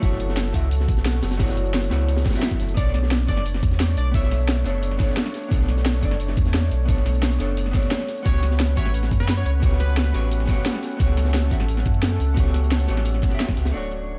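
A dark, lightly reverberant production opens this dreamy liquid drum and bass excerpt at 175 BPM, where a round sine sub bass sits up front under an overdriven, thumpy electronic kick, a layered kit with a cracking snare and cabasa, and a saturated breakbeat kit with a high-tuned snare tucked in the background, while a clean hollow-body jazz guitar with delay and a smooth, chorused sawtooth pad carry F#m7, Bm9 and A13 chords, and a punchy, detuned unison lead with tape echo plays brief catchy phrases from 2.8 and 8.3 seconds.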